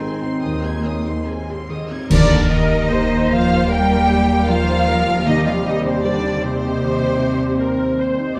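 Played rubato in 4/4 at about 76 BPM, this short, moving cut from an emotional film score in Eb major unfolds with tender restraint. A rich, distant violin section carries the bowed melody with smooth vibrato, supported by a second violin section in the background and a woody, close viola section. A shadowy solo clarinet adds a second line until 1.7 seconds, and a mellow, felt-muted upright piano with audible action noise, a distant French horn section holding sustained chords, and a very quiet, ringing harp playing arpeggios fill out the accompaniment. Cellos with expressive portamento and a lush double bass section anchor the bass from 0.4 seconds. As the harmony moves from Ab to Eb at 2.1 seconds, the full orchestra lands an accent: an airy flute ensemble enters with a second line, bright clash cymbals and bass drum sound close and dry, and timpani strike with hard, articulate mallets. 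A moderate recital-hall reverb and a dark, warm production give the whole excerpt a soft, cinematic glow.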